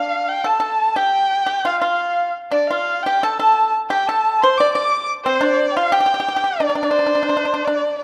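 A dark, woody erhu opens this tender, graceful excerpt of Chinese chamber music, its bowed melody sitting up front with soft attacks, vibrato and portamento, while a large bamboo dizi with a buzzing membrane and a fingerpicked pipa carry second lines from the start. Set in the D yu mode at a rubato 88 BPM in 2/4, the dizi adds a pure, crisp and expressive voice in the background before stopping at 7.6 seconds, and the dry, percussive pipa stays close alongside the erhu until 8.0 seconds. A moderate concert hall reverb surrounds the ensemble in a dark, warm production.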